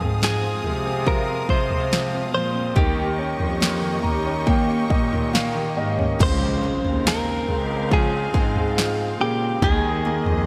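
This hopeful, heartfelt pop ballad excerpt opens with every part except the impact at once at a slow 70 BPM in straight 4/4: a clean, compressed electric guitar carries the melody in a narrow upper range over a clear grand piano treated with lush chorus. A focused studio string section holds sustained chords with vibrato, while a very quiet picked steel-string acoustic guitar adds arpeggios beneath. A reedy, gut-string cello section with light vibrato supplies the bass line, and an electronic, layered drum kit sits up front with a punchy kick and snare, plus crash cymbal and toms. The harmony moves from Fm7 to Eb7, and the piano plays a fill from 3.6 to 6.2 seconds before the music shifts to Dbmaj7 and a new section. A very quiet electronic impact sounds from 6.4 to 9.6 seconds, and the passage closes on Ebsus4. A moderate, lush hall reverb and bright 1980s-style digital production give the piece a polished, spacious sheen.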